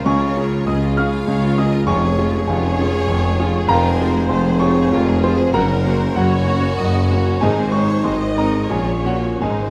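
Passionate and lyrical, this classical fragment in a rubato 3/4 at 80-101 BPM sets a warm, smooth, up-front grand piano melody over a lush string bed of vibrato-laden violin sections (one soft-edged with portamento, one clear and close), focused rich violas, a distant cello section and smooth, very quiet double basses, while mellow French horns hold tight chords in the background and a mellow, very quiet tuba doubles the bass, and hard-mallet timpani enter at 7.4 s, all bathed in a recital-hall reverb as the harmony moves from Db through Fm and Gb to Bbm.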